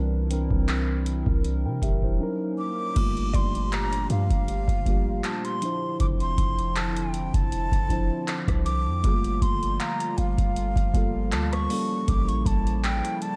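A lightly swung 4/4 groove from a booming analog drum machine, its deep kick, metallic hi-hats, handclaps, rim clicks and crash sitting up front in a large room, drives this moody, longing contemporary R&B excerpt, with a deep, boomy 808-style bass under a mellow, clean tine electric piano and a hollow, soft pad carrying chorus and sidechain pumping, while a breathy jazz flute with vibrato and delay takes the melody at 2.6 seconds during a brief break, and a woody, round synth pluck with chorus and delay flickers in the background at 3.3 and 9.8 seconds, the whole set in a dark digital ambience.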